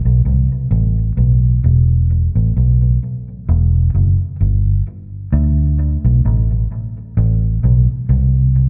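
A vintage muted fingered electric bass plays alone from the start, dark, round and foam-muted, up front in an echo-heavy reggae mix at a slow 65 BPM in E minor, its amped tone trailed by tape echo and bathed in a wet echo chamber reverb that gives this short piece of a longer track a spacious, meditative feel over its 8.7 seconds.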